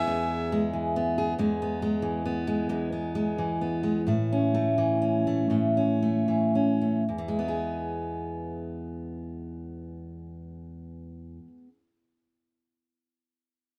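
A full-bodied, up-front fingerpicked steel-string acoustic guitar carries this nostalgic, pastoral acoustic folk fragment in 6/8, joined for only its first 0.5 seconds by a distant, reedy, nasal bowed fiddle, and the music slows between 1.4 and 7.1 seconds as the harmony moves from E to A and back to E in a small, moderately ambient room.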